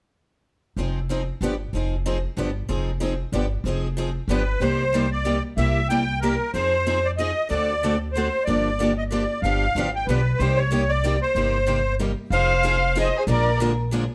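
Swinging in 3/4 at 187 BPM, this bittersweet, virtuosic slice of jazz manouche in C minor sets two bright, picked parlour steel-string acoustic guitars, one of them boxy, over a woody, thumpy pizzicato upright bass with gut strings, before a reedy, shimmering musette accordion takes the melody up front at 4.3 seconds and a bowed violin adds an expressive second line with vibrato and portamento from 12.3 seconds, inside a moderate studio reverb.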